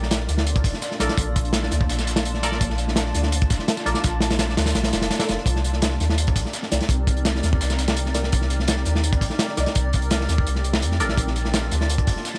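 Crunchy breakbeat drums drive this frenetic yet nostalgic drum and bass and jungle excerpt, with a round, up-front dub sub bass beneath, a gritty, overdriven soul sampler-style kit with hi-hat, snare and tambourine tucked in the background, and a muted, detuned chord stab joining at 1.0 s through phaser, lush chorus and dub echo as the harmony moves between Bbmaj7 and Cm9 in a dry room.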